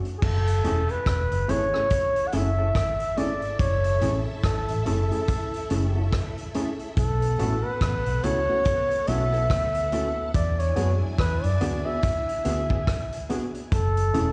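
A breathy flugelhorn with light vibrato and scooped notes carries the jazz-style melody up front, coloured by slapback and tape echo, in this bittersweet, smooth lovers rock reggae excerpt in F# minor at 71 BPM with a swung 16th feel. A foam-muted, round, punchy fingered bass and a tight, dark-cymbaled vintage drum kit with 12-bit sampler grit sit forward, while a worn, slightly out-of-tune tine electric piano, a clean, compressed electric guitar playing stabs in the background, and a shimmering sawtooth string machine line entering at 1.9 s fill out the chords of F#m7, B7sus4 and E7. The cut sounds like a live gig heard through the venue's PA, with recital hall reverb.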